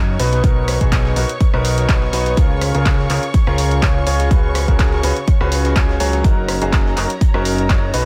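Piano house with a feel-good, euphoric lift, built on a clear, intimate concert grand piano riff with audible action noise and delay, a fat sawtooth analog bass warmed by tube saturation, and dark, woody violin chords in the background, all three pumping against an up-front layered electronic kick from 0.4 seconds, while a punchy analog drum machine's handclaps, hi-hat and rim click sit over a very quiet, gritty breakbeat kit with a high-tuned snare in a dry, close sound.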